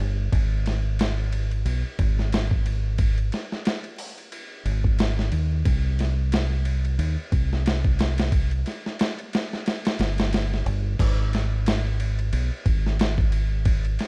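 A swung 90 BPM groove in 4/4 sets a hypnotic, brooding trip hop mood in this excerpt, carried by a gritty, overdriven soul drum kit with a thumpy kick, medium-tuned snare, hi-hat, ride and crash sitting up front. A dark, round fingered electric bass holds the low end beside the drums, and vinyl crackle drifts through a digital ambience. The kick falls away from 9.7 to 11.0 seconds before the music moves into a new section at 11.0 seconds.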